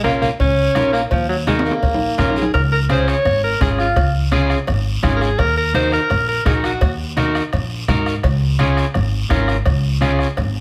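A moderately reverberant studio sound frames this fiery, danceable cumbia excerpt at 168 BPM, where a bright, up-front alto saxophone with light vibrato, slapback echo and plate reverb carries the melody until 7.0 seconds over a twangy, slightly broken-up electric guitar, a woody, thumpy pizzicato upright bass on gut strings, a soft-beaten bombo, background congas and ringing cowbell and timbales, and a raspy guiro, with a drum fill from 1.5 to 2.5 seconds leading into a new section.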